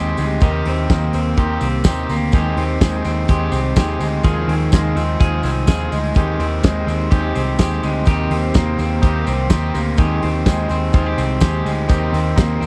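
Jangly indie pop at 126 BPM in a straight 4/4, this breezy, bright passage is cut from a longer piece and sits in a dry, close 1970s-style studio sound with little reverb. A loose indie drum kit, up front with a fat snare, tight kick and hi-hat, comes in at 0.2 seconds alongside a jingly tambourine tucked in the background. Underneath, a vintage muted picked electric bass stays low and round, dark and punchy from its foam mute, holding between C2 and Eb2. A twangy, slightly broken-up electric guitar plays arpeggios through tape echo, while a crunchy overdriven guitar in the background and a buzzy combo organ with light vibrato fill in the accompaniment. The chords move over an Eb bass through Cm7, Abmaj7 and Fm7, settling on Eb6 at 11.9 seconds.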